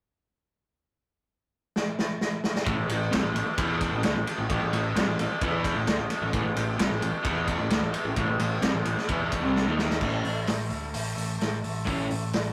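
Garage rock with a raw, swaggering mood, this short cut from a longer piece opens at 1.8 seconds with a drum fill on a vintage acoustic kit, which sits up front with a tight kick, a medium-tuned snare, and dark, rolled-off cymbals across hi-hat, ride and crash. At 2.7 seconds the band crashes in on an A chord: a double-tracked, overdriven electric guitar picks out a warm riff up front, while a growling picked bass, pushed through overdrive and tube saturation, digs in low underneath. A buzzy vintage combo organ holds clean sustained chords with light vibrato in the background, then breaks into a fill that runs to 10.0 seconds, overlapping a second drum fill from 9.6 seconds that kicks the song into its final stretch. The kit itself sounds saturated and mid-forward, and the whole performance carries the rough, warm character of a rehearsal-room recording with tube saturation and a moderate small-room reverb.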